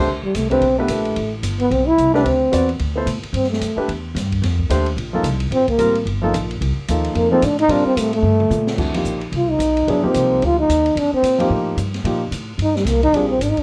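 Worn cassette tape gives this modal jazz passage a warbling pitch drift, set in a moderate club reverb that lends the players a small-room glow. At a brisk 221 BPM in swung 4/4, the mood is hypnotic and searching. The harmony moves from D9sus4 to F9sus4 at 4.4 seconds, settling into F mixolydian from 8.8 seconds. A breathy trombone enters almost at once and takes the solo up front, its dark, whispered tone carrying light vibrato, scooped notes and a smooth top for an intimate feel. Beneath it, a polished concert grand piano comps with deep bass and short sustain, while a pizzicato upright bass sounds woody and growly with thumpy steel strings. An acoustic drum kit with dark cymbals, a high-tuned snare and a boomy kick sits low in the mix and plays a fill from 8.2 to 8.8 seconds, in a cut taken from a longer piece.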